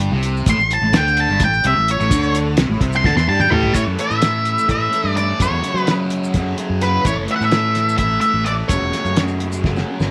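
In a straight 7/8 at 255 BPM counted in eighths, this psychedelic rock excerpt in A mixolydian feels kaleidoscopic and trippy, driven by a bright, double-tracked fuzz guitar riff with phaser, a round fingered electric bass, a dry, cloth-damped drum kit with a fat snare and tight kick, and grainy maracas tucked in the background. An up-front octave-fuzz lead guitar with slapback echo takes a dark, distorted solo from 0.5 seconds. A drum fill at 3.0 seconds leads into a section where the harmony moves between A5 and F#5, all set in a light reverb.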